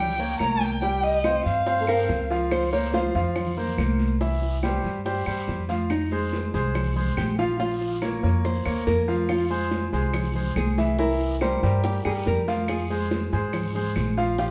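A straight 4/4 Cuban son and guajira groove at 142 BPM in F minor is carried by soft-handed, bright congas, round low bongos, woody claves, raspy guiro and grainy maracas, under a thumpy, pizzicato gut-string upright bass and the clear, polished arpeggios of a concert grand whose action noise is audible. A dark, bowed violin sings up front with vibrato and portamento only until 2.3 seconds, and a small, warm fingerpicked nylon-string guitar takes up a second line from 1.8 seconds. Cut from a longer piece, this danceable, sultry passage sits in a wet large-studio reverb with the band playing live in one room, its later section moving from Fm7 through Bbm and C7 back to Fm.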